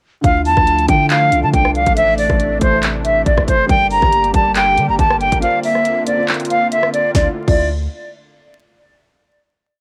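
A half-time trap beat at 139 BPM in D minor, with a hard-clipped kick, sharp snare, handclaps, rim clicks, crash and fast rolls on bright hats, drives this brooding, melancholic hip hop piece, where deep sliding 808 sub-bass notes follow the kick beneath a looping, vibrato-laden flute melody up front, dark rhythmic chords on a felt-muted upright piano with audible action noise, and a detuned sawtooth pad with chorus, every part above the bass carrying a low-fi cassette tape sheen amid vinyl crackle until a break at 5.4 seconds gives way to a final Dmadd9 chord at 7.1 seconds.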